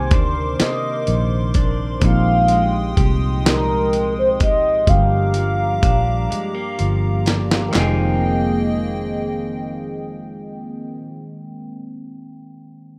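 Slow six-eight R&B at 42 BPM in F dorian, yearning and sultry, cut from a longer piece: a horn-like synth lead with chorus carries the melody up front until 6.8 seconds, over a barky tine electric piano colored by a phaser. A dusty, gritty sampler-style drum kit with thumpy kick, snare, hi-hat and handclaps sits up front beside a round, foam-muted fingered bass, and the kit plays a fill before dropping out at 8.0 seconds. A clean, dark electric guitar adds a second line in the background alongside a hollow, airy pad with chorus, in a dry, rough home demo mix.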